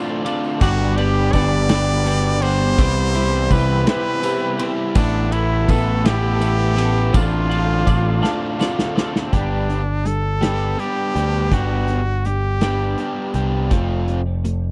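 Carefree and jangly, this indie rock excerpt in 6/8 at 55 BPM in G major sets a warm overdriven electric guitar riff and a bright, chorused twelve-string electric guitar riff with tape echo over a growling, overdriven picked bass and a loose drum kit with a punchy kick in a pumping small room, while a brilliant, forceful trumpet carries the vibrato-laden melody, a faint jingly tambourine fills in until 9.1 seconds and a very quiet lush, warbling detuned sawtooth pad until 9.3 seconds, a glassy FM synth bell adds a brief second line from 7.9 seconds beneath a drum fill, and the dry mix moves through Gmaj7, Cmaj7 and Asus2 before settling on G and F.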